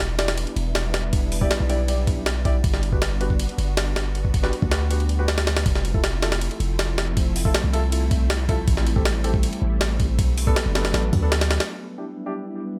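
A straight jungle beat opens this dark drum and bass excerpt, its gritty, pitched-up sampler kit sitting up front with a thumpy kick, high-tuned snare, hi-hat and ride, compressed, tape-warm and set in a large room. Beneath it a deep, sine-toned 808-style bass holds long decaying notes, while a silky, warbling string machine sustains soft chords through Em7, Gmaj7, Fmaj7, Am7 and Bm7, and a mellow grand piano drops stabs trailed by dub echo from 0.2 s. By 11.7 s the drums and bass have stopped, and a filter sweep runs across the strings until the close at 12.8 s, leaving an atmospheric haze.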